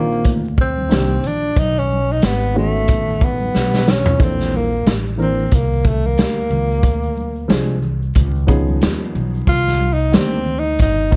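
A dark, crackling vinyl haze and light reverb wrap this short, nocturnal slice of jazz-hop, cut from a longer piece and moving at 91 BPM in 4/4 with a lazy 16th-note swing. Up front, a breathy tenor saxophone carries a whispered, intimate solo across the whole 11.2 seconds, its soft attack and vibrato bathed in plate reverb. Beneath it, a mellow upright piano with audible action noise voices smoky extended chords, moving from Cm11 through Bbmaj9#11 and Dm7b5 before settling on Cm9. A woody pizzicato upright bass anchors the low end, while a punchy vintage drum kit with a rolled-off top and a pumping room sound drives the groove, marked by a drum fill from 3.5 to 4.2 seconds. Bright, band-limited tube shaker and soft-handed congas sit quietly in the background, adding texture to the smoky late-night mood.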